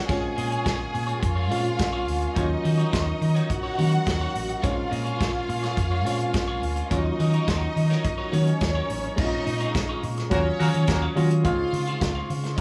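Disco in Bb minor at 106 BPM, this sultry, driving excerpt sets a punchy, round hollow-body bass up front over a tight, roomy soul drum kit, with a barky, reedy electric piano shimmering in fast tremolo, a slightly broken-up electric guitar colored by phaser, lush bowed symphonic strings carrying a second line, and an ethereal glass harmonica holding airy sustained chords in the background, before a vintage-toned horn section adds tight stabs at 10.3 seconds as the chords move from Bbm7 and Ebm7 toward Ebm9 and Dbmaj7.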